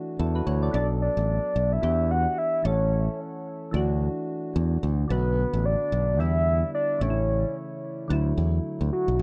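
Afrobeats at 110 BPM in D major, breezy and romantic, with a lilting 16th-note swing over a looping Dadd9, Bm7, Em7, A progression. Soft, mellow electric-piano-like synth keys open the excerpt with a chorus shimmer, a bright, direct fingered electric bass sits up front from 0.2 seconds, and at 0.7 seconds a full, round octave-layered synth lead carries the melody with vibrato, chorus and digital delay. A light reverb gives the short passage a gentle sense of space.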